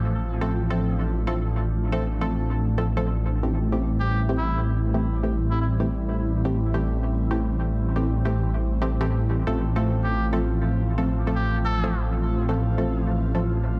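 An echo-heavy mix with light reverb frames this dark, raw drum and bass excerpt at 159 BPM, where a thick, menacing detuned saw bass sits up front under an airy, breathy pad with chorus, phaser and a filter sweep, muted dub chord stabs with chorus and dub echo, and a veiled cup-muted trumpet with gritty sampler colour and light vibrato that enters at 4.0 s and again at 10.0 s over chords moving between F/A and Am7.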